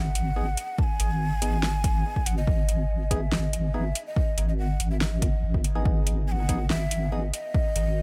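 A half-time 4/4 pulse at 142 BPM drives this brooding, cavernous deep dubstep excerpt in G# minor, held on a single G# minor chord, with a punchy overdriven electronic kick from 0.8 seconds and an overdriven house kit of fat snare and metallic hi-hats sitting up front. Beneath them a dark, detuned wobble bass with chorus holds a low G#, while a hollow, wave-folded organ stab with chorus, phaser and dub echo enters quietly at 0.4 seconds. Above it all, a breathy bamboo shakuhachi carries the melody from the opening, its tongued chiff and vibrato trailing into dub echo in a dry mix.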